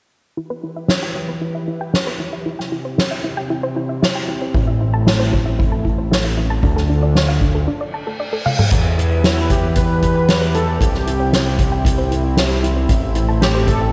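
This nostalgic, nocturnal synthwave excerpt in E phrygian opens at 0.4 seconds with a smooth, slow-blooming analog pad holding sustained chords under a soft, round pluck spinning arpeggios through chorus and digital delay, both parts carrying a filter sweep through the opening half, while the pad pumps against a sidechain. A soft-mallet drum kit joins almost at once, its dark cymbals, fat snare and toms sitting up front in gated reverb, and at 4.5 seconds a boomy acoustic kick and a thick, nasal analog bass arrive to anchor the straight 115 BPM pulse. The chords move from Em through C and Am to Dm before a brief break, where an electronic reverse cymbal rises into a drum fill at 8.5 seconds. The second part returns to Em, C and Am as a detuned unison supersaw takes the melody in the upper-middle register, its delayed line sitting over the groove. A lush hall reverb and bright 1980s-style digital sheen give the whole passage a glossy, late-night glow.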